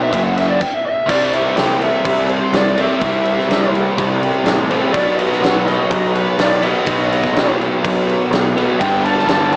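Hard rock at 124 BPM with a heavy, menacing mood, this cut from a longer piece opens with a dark, distorted bluesy lead guitar solo over a double-tracked overdriven rhythm guitar riff, a growly fuzz-driven picked bass and a huge arena drum kit with a fat snare, punchy kick, crash and ride. After a stop at 0.6 seconds, the band drives on through chords of C, B and G5, all heard through light reverb and a small-speaker sound.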